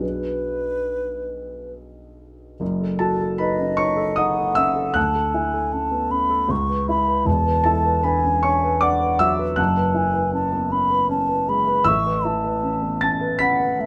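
Classical impressionist music for flute and grand piano, this hazy, mysterious passage moves at 78 BPM in a rubato 3/4, centered on F# minor with tuning at A4 = 439 Hz. A hollow baroque flute carries the melody between B4 and C#6, its pure wooden tone shaded with vibrato, a crisp attack and lifted highs. Beneath it, a dark concert grand piano supplies accompaniment across a range from E1 to B6, mellow and up front with a deep bass. The harmony drifts through colored chords such as Bm6, F#m6, Dmaj9 and E9sus4, with a new section opening at 2.6 seconds and the passage reaching Aadd9 at 11.9 seconds. Light reverb softens the duo, and the recording is cut from a longer piece.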